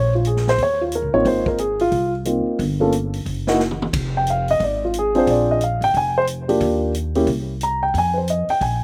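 A dark, mellow baby grand piano carries the melody up front with audible action noise and a slapback echo, over a woody, pizzicato upright bass and a swinging big-band drum kit with a punchy kick that drops a short fill at 3.6 seconds, in this dry, sophisticated jazz piano trio snippet cut from a longer piece.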